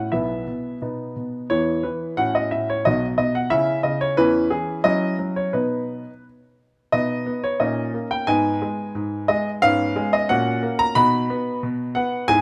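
A straight, tidy 2/4 pulse carries this graceful, playful classical-period sonatina, cut from a longer piece and played by a solo baby grand piano spanning B1 to B5. The piano sounds clear and natural, with short sustain, and sits up front under close, detailed microphones and light reverb. A first phrase gives way to a second section at 6.9 s, which moves through G# minor and C#7 harmony before settling home on B at 11.0 s.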